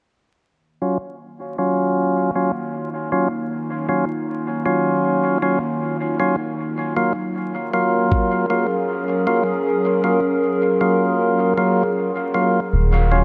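A warbly, detuned pad fades in at 0.4 s with sustained Ebm9 and Gbmaj7 chords in this spacious, deep ambient dub excerpt at 78 BPM in Eb minor, joined by lightly overdriven stabs from a key-clicking tonewheel organ under a filter sweep and dub echo, a single muffled, thumpy kick near 8.1 s, and a round, dark analog bass with tube saturation arriving up front at 12.7 s, all set in a lush hall reverb with vinyl crackle.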